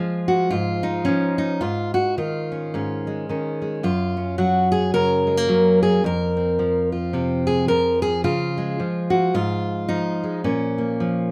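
A fingerpicked steel-string acoustic guitar plays alone, up front with an auditorium body and light reverb, in this reflective, intimate folk excerpt at 109 BPM in 4/4 with a gentle swing, tuned to A4 = 439 Hz, moving from Db through Gbmaj7, Fsus4 and back to Db before reaching Bbm at 10.4 seconds.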